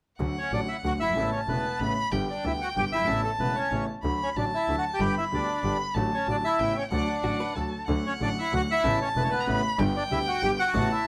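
A reedy, bright bandoneon carries the melody in this short excerpt of a playful, nostalgic tango in three, its close, dry sound sitting up front from 0.4 seconds onward. Alongside it, a single bowed violin plays a second line high in its range with vibrato and portamento, warm and expressive despite its distant placement. A clear concert grand piano supplies the accompaniment with a smooth, vintage character and deep bass, joined by a focused, bowed double bass holding the low end with vibrato. The rubato feel lets the phrases breathe over a cycle of D major harmonies. Around 7.2 seconds a dark, clean hollow-body jazz guitar slips in briefly with a compressed, picked second line before falling away at 7.9 seconds, and moderate studio reverb gives the ensemble a modest sense of room.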